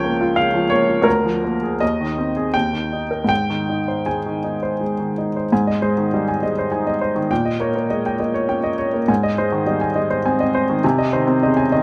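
A clear, woody upright piano carries this romantic character piece alone from start to finish, its intimate, up-front tone revealing audible action noise and a long, polished sustain across a range from Db2 to Ab5. In Ab major and a flexible 3/4 with rubato drifting between 76 and 106 BPM, the music feels bittersweet and stormy, moving through chromatic-tinged harmonies like Bb7/D before settling on Ab at 3.3 seconds and shifting into a second section at 5.5 seconds. Close, detailed miking sits within a moderate recital-hall reverb, and the passage is cut from a longer work, ending at 11.8 seconds on an Ab/C chord.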